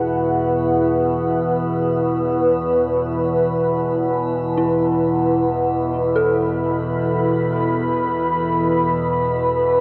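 This dark ambient drone excerpt drifts in free time, its unsettling mood built around a single Esus2 chord held throughout. A deep, moody pad sits up front with sustained chords, its detuned sawtooth unison layers and sub octave softened by a moving notch, chorus and a shimmer reverb that adds a glassy halo. Beneath it, an overtone-sweeping drone holds the low register, its resonant blend of sawtooth, sine and triangle waves and ring modulation giving a metallic, shifting edge. At 4.6 seconds a dark detuned synth bell enters with eerie, inharmonic FM arpeggios, warbling through phaser, chorus and a diffuse delay, with its own shimmer reverb trailing each decaying note. The whole piece is bathed in a huge, wet reverb that blurs the layers into a cavernous, uneasy haze.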